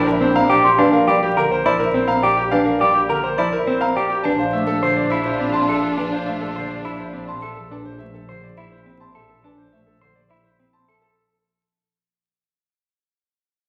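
Hypnotic and bright, this minimalist classical pattern piece moves at 104 BPM in a straight 3/4, cut from a longer work and fading out across its full 11.2 seconds. A brilliant, short-sustained grand piano carries the melody up front, while a clean, scooped electric guitar spins fingered arpeggios just as close to the ear. A bell-like celesta with soft felt hammers adds delicate, ringing arpeggios high above from 0.4 seconds, and a vintage-toned bass clarinet supplies accompaniment in the background. A clear soprano saxophone with gentle vibrato and a smooth, evenly bowed string section both sound briefly at the start and return together from about 4.2 seconds, the strings holding sustained chords as the harmony shifts from Bb69 to Dmadd9/Bb. Underneath, a dark, woody double bass section anchors the low end, and the whole is set in a reverberant recital hall with a layer of vinyl crackle.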